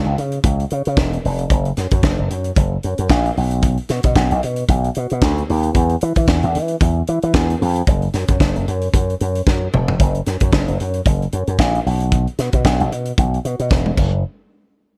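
A slap bass run through an envelope filter opens the track, bright and punchy, sitting up front and ranging from E1 to E3. A tight funk drum kit joins at 0.2 seconds with crash cymbal, hi-hat, kick drum, snare drum and toms, its high-tuned snare and compact kick carrying a small-room, natural acoustic character with gated reverb. This is driving, danceable disco at 113 BPM in 4/4, with a 56% swing on the sixteenths giving the groove a slight lilt. A drum fill at 9.5 seconds leads into a new section at 10.0 seconds, and another fill closes the passage from 13.7 seconds. The overall sound is dry and close, with both parts placed prominently in the mix, and the recording is cut from a longer piece.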